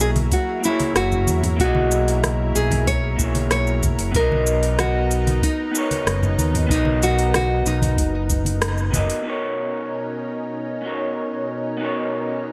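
A sunny sunset chillout piece, cut from a longer track, opens with a bright, fingerpicked nylon-string guitar melody with finger squeak and tape echo, over slightly broken-up, lo-fi picked electric guitar, a lush detuned sawtooth pad with chorus and gritty sampler texture, and a punchy, overdriven fingered bass up front. From 0.2 seconds a layered deep house kit with metallic, filtered hats, cabasa and rim click enters alongside thick-skinned, low-tuned congas in the background, and a deep analog electronic kick follows at 0.3 seconds, all under light reverb. After a band accent at 8.6 seconds, the electric guitar and pad carry on alone from 9.3 seconds, moving from F#13 and Bmaj7 to Bmaj9.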